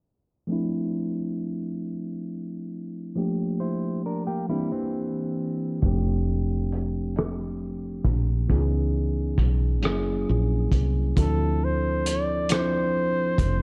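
A dark, low-pass-filtered production with light small-room reverb and a filter sweep running through the first 11.2 seconds sets a sultry, yearning mood for this slow six-eight R&B passage in D minor at 45 BPM, cut from a longer piece. A clean tine electric piano through a combo amp carries the chords from the start, a dark, fingered clean electric guitar adds a brief second line from 3.6 to 5.8 seconds, and then a growly, round fretless bass with ensemble chorus arrives with a muffled, gritty, cloth-damped drum kit of tight kick, hi-hat and rim click. At 11.2 seconds the harmony returns to Dm7 as a smooth, jazz-style flugelhorn takes the melody with vibrato and slapback echo.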